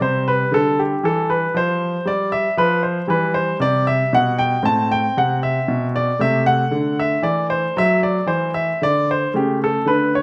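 Recorded with close, detailed microphones in a recital hall with moderate reverb, this brief cut from a longer baroque-style suite movement features a clear, intimate baby grand piano, up front with audible action noise and long sustain, playing solo in a radiant, dance-like 12/8 with a rubato feel, moving from C through E minor and A minor before closing on A/C# at 9.3 seconds.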